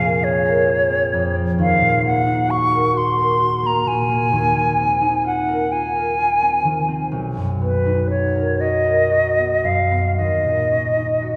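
A silver concert flute, pure and up front with soft attacks and vibrato, and a fingerpicked, ringing concert harp open this mysterious, hazy impressionist classical fragment together, moving in a rubato 6/8 at roughly 37-45 BPM in Eb dorian through chords such as Bbm9, Ab69/Eb and Bmaj7, the duo heard from further back in a wet concert hall with a 2.3-second reverb tail.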